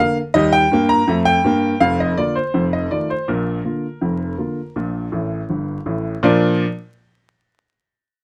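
A woody upright piano plays alone from the start of this short, lively ragtime cut from a longer piece, in a jaunty two-beat metre with a straight feel and a full range from deep bass to bright treble. Near the close, a piano fill runs from 5.1 to 6.2 seconds, just before a new section begins, and the piano stops at 6.6 seconds. The natural, up-front piano tone is captured by close, detailed microphones with light reverb and a layer of vinyl crackle.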